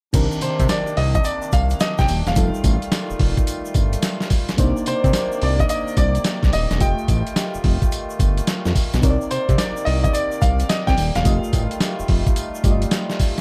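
A punchy, confident new jack swing groove at 108 BPM opens with a gritty, pitched-down sampler-style drum kit up front, its thumpy kick, medium-tuned snare, hi-hat, tambourine and crash riding a 16th-note swing, alongside a fat, detuned sawtooth bass, a warbling FM electric piano, reedy accordion chords and a grainy tube shaker in the background. From 0.4 seconds a clear, polished concert grand piano carries the melody in a high register over a Cm9 to F9 vamp in C dorian. The mix is dry, with little reverb, in this fragment of a longer piece.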